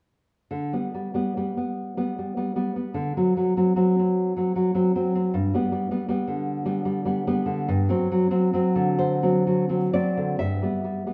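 A wet recital hall reverb, with a decay of about 1.4 seconds, surrounds a single nylon-string guitar that sits up front in the sound. This short cut from a longer romantic piece for solo classical guitar is in G major and 6/8, moving at a slow, rubato 41-53 BPM counted in dotted quarters. The guitar plays alone from 0.5 to 11.1 seconds, ranging from G2 up to E5, and its tone is dark, woody and full-bodied, with the deep, thumb-plucked character of old strings. The harmony moves from G/D through a rootless D7, back to G, then to D7 over G before settling on G at 10.4 seconds. The mood is warm and nostalgic, shaped by the free, breathing pulse and the resonant hall around the instrument.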